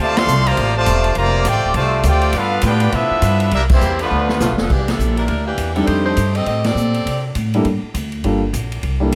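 A swinging 4/4 groove drives this brassy big-band jazz excerpt, where a brilliant trumpet section carries the melody over a nasal, straight-muted trombone line until about 4.5 s, a woody, thumpy pizzicato upright bass and a drum kit with a punchy kick run throughout, an edgy saxophone section with vibrato takes over the melody from 4.4 s, and a warm concert grand piano adds accompaniment from 5.8 s, with band accents, a short drum fill and light reverb.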